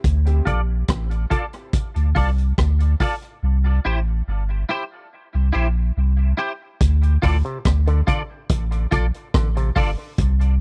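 A straight 4/4 dub reggae groove of punchy kick, hi-hat and rim click on a vintage drum kit sits up front beside a round, sine-like sub bass in this deep, spacious fragment, while a bright, twangy clean electric guitar carries the chorus-tinged, dub-echoed accompaniment through a filter sweep and falls silent between 3.4 and 6.8 s, and a mellow, stringy clav with auto-wah and dub echo adds arpeggios from 7.2 s, all captured as a dry, close 1970s-style studio recording in a small room.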